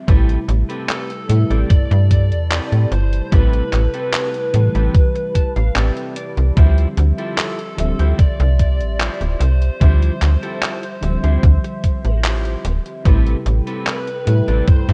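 A melancholic, hazy vaporwave excerpt in a straight 4/4, moving from Am9 to Dm11 and back, with a thumpy, tape-warm electronic kick and a snappy, metallic FM slap bass sitting up front, while a detuned 8-bit drum machine supplies handclaps and hi-hat re-recorded in a small room. A lush, dreamy FM electric piano with a soft pad layer carries the accompaniment through analog chorus, and a dark, warbling tape-like pad holds sustained chords in the background. A bright, clean electric guitar plays a riff through chorus, low-pass filter and tape echo, with a fill from 4.9 to 6.6 seconds, as an overdriven lead guitar through a small cranked amp carries the melody from 0.9 seconds, all in a rough, dry cassette demo mix.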